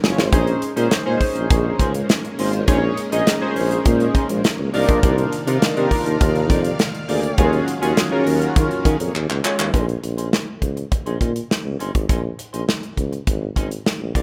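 A dry, rough home-demo sound frames this danceable, slick early-eighties boogie funk cut in Bb minor at 102 BPM, a short section lifted from a longer piece, where a punchy, up-front studio drum kit with handclaps, hi-hat and a pumping room drives beneath a pop-style tuba bass with light vibrato. A glossy, retro chorused polysynth with filter sweeps and a lush, brilliant string machine playing sustained chords fill out the harmony over Bbm11, Cm11 and Ebm11. A dark, detuned, brassy synth second line with ring modulation and a clean, hollow-bodied electric guitar riff in the background round out the arrangement, with the brass dropping out at 9.8 seconds as the piece moves into a new section at 9.7 seconds.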